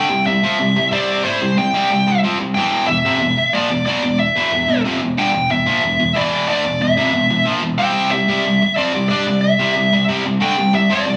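A dark, high-gain lead guitar carries the melody between C5 and G5 over a bright, double-tracked overdriven rhythm guitar riffing from E2 to E4, both picked and up front, in this epic, relentless metal excerpt in E phrygian at 92 BPM in straight 4/4, cut from a longer piece and played live in one room with a moderate large-studio reverb as the chords move from C5 to E5 at 2.5 seconds and back to C5 at 7.8 seconds.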